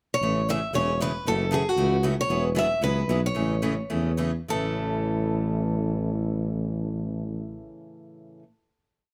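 A light reverb gives this short, complete piece of acoustic string swing in A major an intimate, close-up sound, with every part placed up front. The mood is playful and lively, at a swinging 197-232 BPM in 4/4. Opening with a brief pickup, a picked steel-string parlour guitar carries a bright, boxy, motif-based melody in sentence-like phrases, set in plate reverb. A second picked steel-string guitar with fresh strings plays four-to-the-bar rhythm, short and accented on two and four, through Amaj7, F#m7 and Eadd9 before returning to Amaj7. A mellow tuba with vibrato supplies a jazz-style two-beat bass of roots and fifths with walk-ups. The tempo slows from 2.3 seconds, the tune settles on a final A chord at 4.5 seconds, and the tuba stops at 7.7 seconds while the two guitars carry on a little longer.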